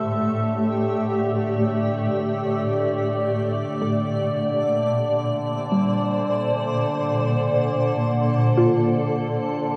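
Ambient music in free time, serene and spacious, where an up-front granular cloud pad holds blurred, evolving sustained chords with shimmer reverb and a filter sweep across the whole 9.8 seconds, while a soft, round plucked synth with chorus and delay plays dark arpeggios in the background and an overtone-sweeping drone on D3 rises in by fade-in alongside it, all moving from A7sus4 through Bbmaj7 to F in a huge, wet reverberant space with a cassette-tape character, cut from a longer piece.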